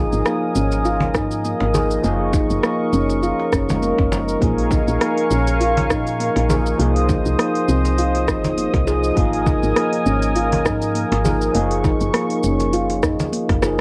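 This hypnotic, earthy organic downtempo excerpt opens at once with a gritty, overdriven tine electric piano played through a combo amp, a smooth, warbling analog pad of detuned sawtooth and wave-folded sine with a soft attack, a ringing, meditative handpan playing airy arpeggios with sharp finger strokes, and a round, dark FM bass with a woody, fast-attack, decaying tone. An afro-pop drum kit with metallic hats, rim clicks and shaker follows almost immediately, a soft-handed, band-limited cajon with faint snares joins at 0.7 seconds, and a deep, tape-warmed electronic kick arrives at 1.1 seconds. The gently swung groove cycles through Absus2, Gb6, Bbm7 and Cdim chords. The electric piano carries phaser and tape echo, the handpan also trails tape echo, and the pad is thickened with chorus and vintage 12-bit sampler grit, while sidechain pumping breathes through the piano, pad and bass. A cassette-tape character colours most parts, all set in a moderate small room for a homespun feel, and a brief drum fill at 13.5 seconds closes the passage.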